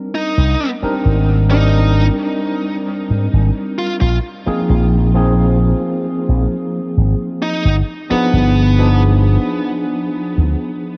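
Dark, cassette-tape production and a huge, moderate ambient reverb wrap this nostalgic, woozy vaporwave fragment at 66 BPM, where an up-front, clean tine electric piano with lush chorus and analog delay carries the chords from Cm7 through Abmaj9#11 and Bb9sus4 to G7b9b13, a bright, punchy slap bass with an envelope filter enters at 0.4 seconds, and a bluesy overdriven lead guitar, picked and distorted with tape echo, sings the melody until 9.0 seconds.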